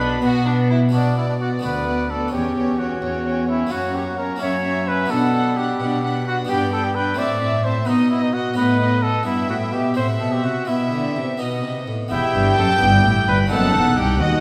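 A mellow, roomy solo trumpet leads this driving, dramatic baroque-style concerto excerpt in 6/8 at 86 BPM, moving from B minor into E minor at 6.5 s over a round, plucked harpsichord, gut-string period-style violins with a rich top line in the background and a close second line, dark distant violas, a warm cello section, and a reedy double bass section heard only at the opening and again from 12.1 s, all set in a wet concert hall.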